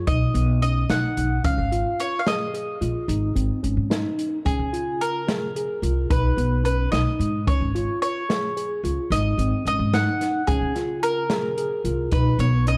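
Intricate and bright, this short excerpt of progressive instrumental band music moves in 11/8 at 219 BPM counted in eighths, with a straight feel in Db major. An up-front picked mandolin carries the melody, its doubled strings giving a woody tone colored by an analog delay. Beneath it, a mellow tine electric piano plays clean arpeggios through its built-in speakers, also treated with analog delay. The pizzicato upright bass is the loudest part, thumpy and up front with a steel-string bite, while an open jazz kit joins at 0.1 seconds with hi-hat, a medium-tuned snare and a boomy kick that sounds recorded in a small room. The harmony circles through Cb, Db and Ab, touching a Cb6 chord at 6.1 seconds, all set in light reverb and studio ambience for a dark production.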